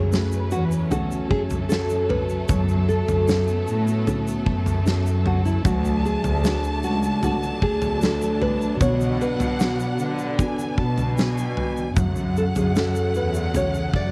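A dry, close recording with a 1970s studio feel frames this heartbroken, longing pop ballad in F# minor at 76 BPM, moving through F#m, D and Bm before returning to F#m. A fingerpicked nylon-string guitar carries the melody with fresh, classical tone and a slapback echo, while a distant, expressive violin section adds a lush second line and a bowed cello section sits up front on the bass with a pure, floating sound. In the background, a dark felt-muted upright piano, a woody string section holding sustained chords and a grainy egg shaker sit alongside a huge arena drum kit with a punchy kick and fat snare that enters at 0.1 seconds.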